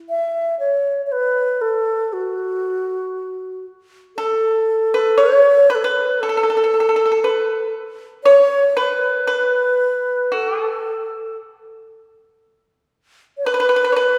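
A bright, reedy low xiao carries the melody from the start, its airy, tongued straight tone sitting up front in a graceful, festive piece of Chinese traditional chamber music in a slow, straight 4/4. At 4.2 seconds a pipa joins as a second line, its fingerpicked attack warm, dry and percussive, and both voices continue to the cut at 14.2 seconds. The recording sits in the long, wet reverb of a church or concert hall, with a shift to a new section at 12.4 seconds just before this fragment of a longer work breaks off.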